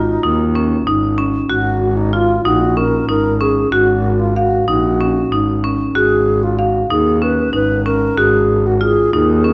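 This recording has the worn, warbling character of an old cassette, with a warbly pitch drift running through a moderate recital-hall reverb. It is a short cut from a longer contemporary chamber piece in an uneven 7/8 metre, with a straight feel and a pensive yet urgent mood. Up front, a marimba struck with medium-hard mallets spins out percussive arpeggios, its tone vintage and band-limited, while a single bowed double bass holds the low end with a rich, smooth and even sound. Above them, an alto flute carries the melody in a pure, tongued voice with lifted highs, and both flute and bass sing with vibrato. All three play together for the full 9.5 seconds, moving from G#5 to D#m7/G# at 1.5 seconds and returning to G#5 at 6.0 seconds.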